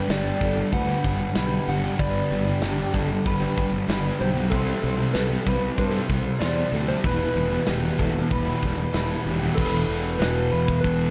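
A straight 4/4 pulse at 95 BPM comes from a loose indie drum kit with a punchy kick, medium-tuned snare and dark cymbals, entering at 0.1 s together with a growly, fuzzed fingered bass, in a hazy, melancholic shoegaze and dream pop excerpt in E minor that moves through Gmaj7, C6 and Em before settling on Esus2 at 9.6 s. Behind them sit a thick, distorted fuzz guitar riff with lush chorus and a crunchy overdriven guitar riff washed in reverse reverb, while a slightly broken-up, lo-fi guitar through a small old amp plays compressed arpeggios with ensemble chorus and slapback echo. On top, a soft, round FM synth lead with a keys-like, decaying tone and vibrato carries the melody with chorus and slapback echo, all set in a dark production with light studio reverb.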